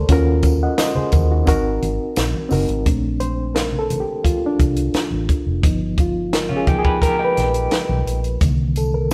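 Smooth and romantic, this 86 BPM excerpt of lush 1970s-style soul sets a worn, reedy electric piano with fast tremolo up front, taking a solo from 2.9 seconds over chords moving from Ebm7 to Cm7, supported by a dark, foam-muted fingered bass, a dry compact cocktail kit with a high-tuned snare and punchy kick, soft-handed congas and a jingly tambourine in the background, and a slightly broken-up picked guitar riff with tremolo at 6.5 seconds, all played live in a moderate stone room.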